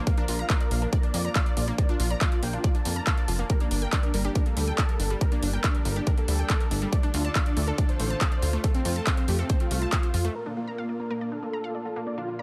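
Uplifting trance in a euphoric, soaring mood, cut from a longer piece, where a huge, thick supersaw melody soars over a bright, detuned unison pluck arpeggio and a warbling vintage pad in the background, all pumping with the sidechain, while a punchy overdriven kick, metallic hats and handclaps drive a funky analog bass through a Bb–Gm–Dm–F progression until the drums and bass stop near 10.3 seconds and a filter sweep moves across the pluck through the final 2 seconds.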